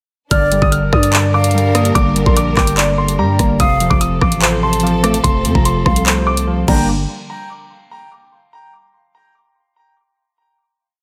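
A lightly reverberant, menacing drill track in G minor at 146 BPM with a half-time feel, built on a single dark hook from 0.3 s that moves from Gm to F and back before a final hit at 6.9 s. Up front, an electronic drill kit pairs a knocking kick and metallic hats, including skipping fast rolls, with handclaps, rim clicks and crash, while a growling, buzzy 808-style bass holds long sub-bass notes that follow the kick with pitch slides and rings on until 7.1 s. Above, a clear concert grand piano loops a smooth, vintage melody through a low-pass filter and delay, warbling lo-fi synth keys run a detuned, chorused rising arpeggio in eighths, a breathy flute adds a sparse delayed counter-melody, and a lush bowed string section sustains warm chords.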